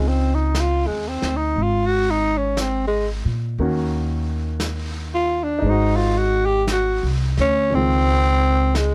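A growling tenor saxophone opens this tender, romantic jazz ballad in Db major at 59 BPM, joined from the first moment by a clear baby grand piano and a woody, pizzicato upright bass. Half a second in, a vintage brush drum kit enters with brushed snare and hi-hat, its small-room sound warm and rolled off at the top. The saxophone carries a solo melody up front through the first 7.7 seconds, its tone raspy and gritty with a soft attack. The piano offers natural, short-sustained accompaniment over a Dbmaj9, Ebm7 and Ab7 progression in a gently swung 4/4, while the steel-strung bass sits up front beneath it. The recording is close and detailed with little reverb, and as a new section begins on a return to Dbmaj9 the passage ends, taken from a longer piece.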